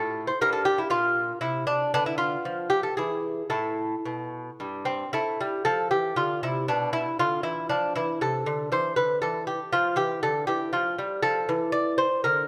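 A solo lute carries this short cut from a longer classical piece, a baroque-style dance in triple metre with a solemn, introspective mood. The instrument is fingerpicked on nylon double strings, some of them octave-doubled, giving a delicate, warm tone that sits up front in the sound. The rubato feel lets the dance breathe freely across a range spanning G2 to D5. The opening section runs to 5.1 s, briefly leaving harmony behind before settling on a bare A chord. The second section moves through A minor, D minor with an added eleventh and plain D minor before the cut ends at 12.5 s. A moderate recital-hall reverb surrounds the lute with a gentle sense of space.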